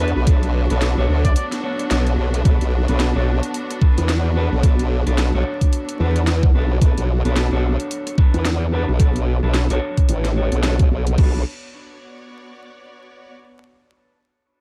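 Playful and funky, this glitch hop excerpt in B minor moves at 110 BPM with a 16th-note swing, opening on a drop where a breathy, whispered trumpet melody sounds until 1.5 seconds and a warbly, lo-fi tape-like pad holds until 2.4 seconds, with a band accent landing at 1.9 seconds. A formant-sweep wobble bass with chorus and tube saturation sits up front beside a knocking, overdriven electronic kick that enters at 0.3 seconds, while an overdriven drum and bass kit adds a cracking snare, bright hats, rim clicks and crash cymbal. Mellow, fingered electric guitar stabs pump with sidechain, low-pass filtering and tape echo, and a lush symphonic string section lingers in the background until 13.3 seconds, all within a dark, dry production dusted with vinyl crackle.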